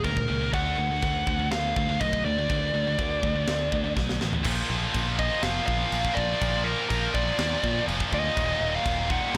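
A blown-out, overdriven recording with light reverb gives this dark, heavy metal excerpt a crushing, saturated edge at 122 BPM in a straight 4/4. Up front, a dark, smooth lead guitar carries the melody with overdrive and digital delay, set over a picked electric bass that sounds growly and punchy. Behind it, a heavy high-gain guitar with distortion plays a bright, picked riff alongside a very quiet scooped high-gain guitar. The tight metal kit, recorded in a big, airy room, brings polished cymbal splashes from china and crash, a high-tuned snare, toms and a tight kick, and it plays a fill from 4.0 to 4.5 seconds. A second, double-tracked heavy guitar with distortion joins the background riffing at 4.4 seconds as the harmony moves from Eb5 and D toward Bb, then settles on Ebm at 8.4 seconds.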